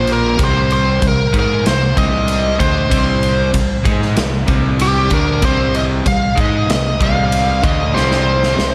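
A distorted, bluesy lead guitar sings up front with slapback and tape echo over a heavy, aggressive hard rock groove, backed by a brilliant-toned cranked stack guitar and a hollow-bodied overdriven semi-hollow guitar riffing in the background, a dark, round fingered electric bass, and a big acoustic drum kit with punchy kick, medium-tuned snare and ride cymbal that closes the excerpt with a fill from 7.9 to 8.7 seconds, all set in a lush hall reverb for a big arena sound.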